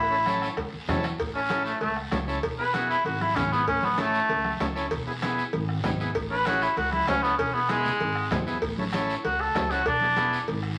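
Sunny and danceable, this cumbia excerpt at 194 BPM in A major puts a warm cor anglais up front, its soft attack and light vibrato carrying a classical-style solo from 1.2 seconds over a buzzy, vintage combo organ, a woody, growly pizzicato upright bass, close, dry metal-shell cowbell and timbales, a raspy guiro, and ringing congas and a soft-beater bombo in the background, the whole mix wrapped in studio reverb and vinyl crackle as the chords sway between A and E.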